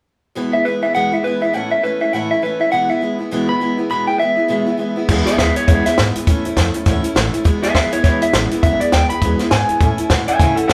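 A swung, fast 4/4 groove at 203 BPM drives this retro, rollicking rockabilly excerpt in E major, cut from a longer piece. It opens with a bright, picked steel-string acoustic guitar playing accompaniment while an electric guitar through a small old amp carries the melody, its dark, slightly broken-up tone sitting up front. At 5.1 seconds an upright bass and a compact cocktail drum kit join, the bass giving woody, thumpy pizzicato on gut strings and the kit adding a tight kick, a high-tuned snare, hi-hat and dark crash cymbals with a dry, natural feel. The harmony moves simply between E and A chords. The band sounds as if playing live in one room, wrapped in a moderate large studio reverb.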